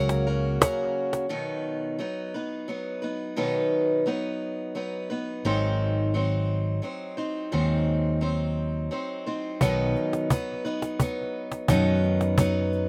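Acoustic folk with a gentle, pastoral lilt in three, this short cut centers on an up-front parlour steel-string guitar with fresh, picked strings; a reedy, breathing harmonium opens it before dropping out at 1.3 seconds, a round, amped electric bass returns at 5.4 seconds, and a snappy, close, hard-handed cajon with snares comes back at 9.6 seconds, recorded dry outdoors.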